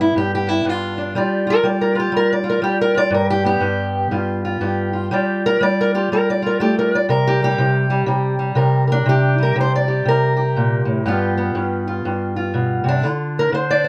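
A fingerpicked steel-string parlour guitar plays alone from the first moment, its dark, boxy tone placed up front by close, detailed microphones and touched with light reverb. This laid-back, soulful acoustic country blues moves at 121 BPM in 4/4 with a swung eighth-note feel in G mixolydian, ranging from G2 to D5. The harmony rests on G7, shifts to C5 at 7.1 seconds, and returns to G7 at 11.1 seconds before turning to D7 at 13.0 seconds, shortly before the fragment ends at 13.9 seconds.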